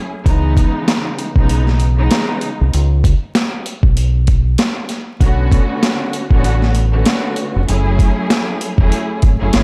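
Gritty and moody, this boom-bap hip-hop excerpt, cut from a longer piece, rides a swung sixteenth-note groove in 4/4. A lush, bowed studio string section opens alone at 0.0 seconds, its close, expressive ensemble sound marked by vibrato and portamento and colored by cassette tape and filtering that trims both the lows and highs. At 0.3 seconds a sampler-style drum kit and a deep dub fingered electric bass arrive together and sit up front. The compressed, pitched-down drums pair a thumpy kick with a high-tuned snare and hi-hat, re-recorded in a large room, while the bass is dark and round with a direct, amped tone. The harmony moves from C#m9 to Bm9 at 5.2 seconds and F#m9 at 7.7 seconds, all over a steady bed of vinyl crackle.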